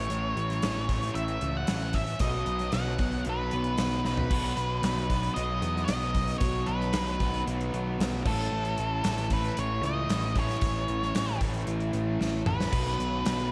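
This short excerpt opens onto a big arena sound, with a lush hall reverb and a touch of small-room ambience giving the band a polished, stadium-sized sheen. It is sunny, driving classic rock in B mixolydian at 114 BPM in a straight 4/4, moving between A and B chords. Up front, a dark octave-fuzz lead guitar carries the melody between A4 and F#5, its distortion trailed by a slapback echo, while a growling picked bass with overdrive anchors the low end. Behind them sits a thicket of riffing guitars: a hollow-bodied overdriven semi-hollow, a bright, compressed distorted guitar with its own slapback echo, and a very quiet, double-tracked crunchy guitar. A gated 80s drum kit, punchy in the kick and bright in the cymbals, enters at 0.1 seconds with an airy stone-room character and drives the groove, marking the turns with fills at 4.0 seconds and again from 12.2 seconds.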